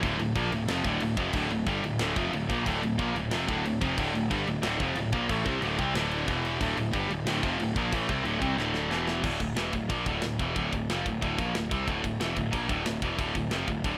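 This rough home demo has light reverb, with a tight distorted guitar pushed up front and a high-gain distorted guitar sitting in the background. It is a relentless, aggressive heavy metal piece in a straight four, cut from a longer work, and opens in a half-time feel built on minor riffs with brief power-chord jabs. Beneath the guitars, a fuzz-soaked picked electric bass growls through an overdriven amp. An acoustic drum kit, mid-forward in a studio room with a tight kick, a medium-tuned snare, crash and ride, rolls into a fill at 8.6 seconds. At 9.2 seconds the high-gain guitar drops out and a new section begins, carried by the up-front guitar, bass and drums until 14.0 seconds.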